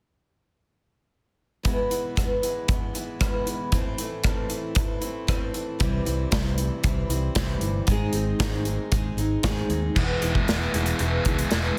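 Densely limited with light reverb, this anthemic, restless quiet-loud alternative rock excerpt opens at 1.6 seconds on bright picked steel-string acoustic arpeggios with slapback echo and a punchy big rock drum kit, adds a growly, amped electric bass at 5.8 seconds, and turns heavy at 10.0 seconds when a thick, distorted fuzz guitar riff bursts in up front.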